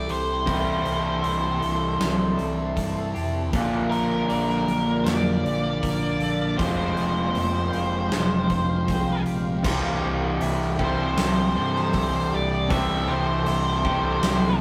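A straight 4/4 pulse from a huge arena drum kit, with its fat snare, punchy kick, hi-hat and crash, drives this dreamy, wistful shoegaze and dream pop excerpt. A raw, overdriven garage guitar riff sits up front beside an octave-fuzz lead melody, while a dark, thick fuzz guitar, a round, amped fingered bass and a very quiet, direct-recorded clean guitar playing arpeggios fill out the sound. Behind them, an ethereal pad with octave-up shimmer, granular texture, chorus and phaser holds sustained chords over a C6 to Bb to Fmadd9 progression, all in a rough rehearsal-room recording bathed in studio reverb.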